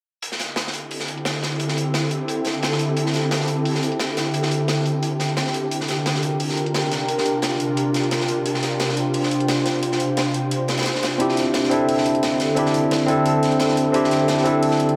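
A dreamy, reverb-soaked plate sheen hangs over this soulful, lush excerpt of liquid drum and bass, where a glassy, ethereal FM pad holds up-front sustained chords with ensemble chorus and a filter sweep, moving from D9sus4 to C9sus4 and back. Beneath it, a crunchy acoustic breakbeat kit of hi-hat and snare sounds saturated and rolled-off, with a lightly swung sixteenth-note feel, while a compressed, sampler-style electronic hi-hat ticks gritty in the background. At 11.2 seconds a bright, clean tine electric piano with a bell-like tone steps up front, touched with subtle chorus and analog delay.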